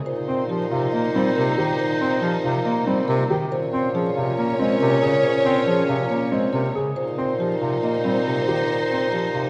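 Classical minimalist pattern music at 139 BPM in 4/4, meditative and hypnotic, where a grand piano with audible action noise spins arpeggios and a woody marimba carries the melody in the background, while a soft-edged, clear clarinet adds a second line, a rich chamber string section holds sustained chords with vibrato, a close-miked bassoon anchors the bass on Bb2, and an up-front bass clarinet supplies warm accompaniment, all over chords moving from Cm7/Bb to Bbm7 at 3.5 seconds and back at 7.0 seconds, bathed in a wet concert hall reverb in this short cut from a longer piece.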